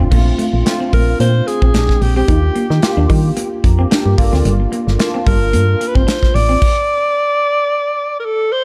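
The recording has a dark, polished studio sound, and this short excerpt comes from a longer piece of slick, nocturnal 1980s jazz-funk pop at 111 BPM in 4/4 with a lightly swung sixteenth-note feel in G minor. An up-front FM bass, punchy, round and digital with a fast attack, sits beside an acoustic kit whose punchy kick, medium-tuned snare, hi-hat and crash ring in a small, airy room. A worn, slightly out-of-tune tine electric piano, lightly overdriven and run through ensemble chorus, comps over chords moving from Bbmaj9 and Bb13 to Ebmaj7 and Gm9, and it adds a fill midway through. In the background, a clean, picked semi-hollow guitar plays a riff through lush chorus. The alto saxophone takes the solo melody from 0.9 seconds with vibrato, a soft attack and a smooth top. It carries on after the piano, guitar and bass stop at 6.6 seconds and the drums at 6.8 seconds, until 8.6 seconds.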